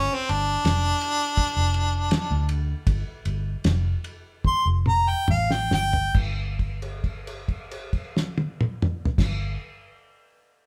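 A straight-eighth 4/4 soul blues groove in G minor, slowing down within 67-84 BPM through the first 6.1 seconds, sets a mournful, smoky mood in this cut from a longer piece. A clear, close-miked harmonica with light vibrato, scooped notes and overdrive takes the solo over a round, foam-muted vintage fingered electric bass and a cloth-damped, thuddy drum kit with a fat snare, tight kick and dark cymbals, which plays a fill from 4.4 seconds. A held note follows as the harmony drops away, and the bass carries on to 9.6 seconds, all captured as a band playing live in one room with a moderate large-studio reverb.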